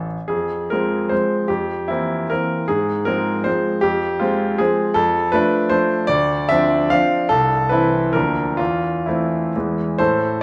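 Dotted rhythms drive this romantic triple-time dance, which sways with a free rubato and has a nostalgic, capricious mood, shifting to a new key at about 5.0 s in a short passage cut from a longer classical piece. A solo grand piano carries everything from the low bass to the upper treble with a brilliant, polished tone, long sustain and audible action noise that keep it up front and intimate. A moderate recital-hall reverb adds natural space around the instrument.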